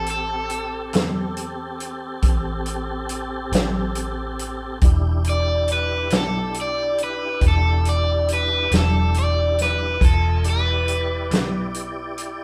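A slow 12/8 blues groove, smoky and soulful, moves from Am7 to Em7 at 4.8 seconds in this short cut from a longer piece. An overdriven semi-hollow guitar carries the bright, picked melody up front with spring reverb, over a dark, round, foam-muted fingered electric bass and a vintage drum kit with a punchy kick, medium-tuned snare, hi-hat and a rolled-off top. Further back, a tonewheel organ holds full, clean sustained chords through a slow rotary speaker and chorus vibrato, and the band plays live together in a stone room with moderate reverb.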